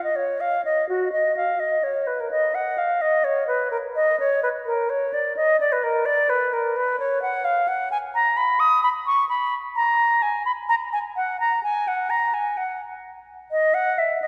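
A lone concert flute carries this 14.3-second passage cut from a longer classical piece, a baroque-style fantasia for unaccompanied flute. Its pure, straight tone is tongued and sits up front, moving between F#4 and D#6. The music has a dance-like, radiant character, set in 12/8 at around 85 BPM counted in dotted quarters, though the rubato lets the pulse breathe freely. A wet church reverb with a 2.6-second decay surrounds the instrument, and the sound is heard from further back in the room, lending the solo line a spacious, resonant halo.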